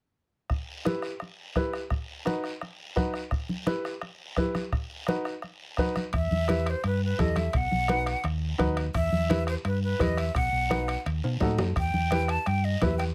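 A soft-beaten bombo, bright, damped congas played with soft hands and a raspy güiro open this fiery, passionate cumbia excerpt at 0.5 seconds, with a clear, woody upright piano joining moments later. The piano sits up front with a short sustain, outlining the E harmonic minor harmony as it alternates between Em and B at a driving 171 BPM in a straight 4/4. At 6.1 seconds the music lifts into a new section as a breathy jazz flute takes the melody, its metal tone carrying vibrato, a soft attack and a slightly unsteady quality. Alongside it enter a round, punchy hollow-body electric bass, dark and amped, and ringing metal-shell timbales, with the flute and bass placed up front. After the harmony moves to B7, a drum fill at 11.2 seconds leads back to Em. The percussion is close and dry, the güiro has a touch of live room, and light reverb surrounds a detailed, close-miked sound.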